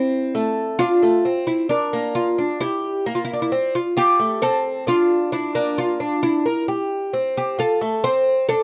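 A straight 4/4 pulse at 133 BPM gives this short latin piece, cut from a longer work, a danceable, sunny lilt in F major, tuned to A4 = 441 Hz. The oud carries the melody between D4 and C5, its plectrum-plucked double strings sounding bright and woody with the fretless voice of the instrument. Beneath it, the Cuban tres plays arpeggios from A3 to Bb4, its picked double strings giving a metallic edge, some octave-doubled, and a warm body. Both acoustic parts sit up front in a dry, close 1970s-style studio sound with little reverb. The harmony moves from Amadd11 through Bbmaj9#11/A, Bb and C5, then shifts at 3.7 seconds into a second section of Fadd9, Dm7, Bb and C7 before landing on F at 7.4 seconds, shortly before the close at 8.6 seconds.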